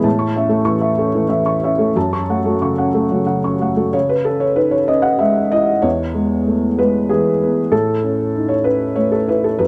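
A felt-muted upright piano plays alone in this reflective, wistful neoclassical minimalist fragment, its soft, mellow, boxy tone sitting up front with audible action noise and the thin felt giving it an intimate character. The 3/4 pulse at 94 BPM moves with uneven, rubato beats as the harmony drifts from A to F#m, then to C#m at 3.9 seconds and E at 5.8 seconds before settling back on A, spanning from low E2 up to C#6. Light reverb and a dark production frame this short excerpt from a longer piece.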